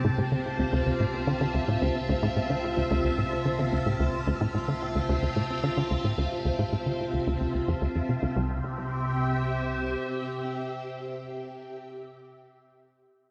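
Washed in a wet plate reverb with faint lossy compression artefacts, this cosmic, expansive fragment of sequencer-driven space music puts a bright, swirling phased string machine up front on sustained chords, while a punchy sawtooth sequencer bass riff with delay and a filter sweep drives until 8.6 seconds, a deep sine sub bass sits in the background until 10 seconds, a resonant, bubbling stepped-filter texture floats high above, and a soft, round pluck traces quiet arpeggios, leaving the vintage strings to hold on until 11.9 seconds.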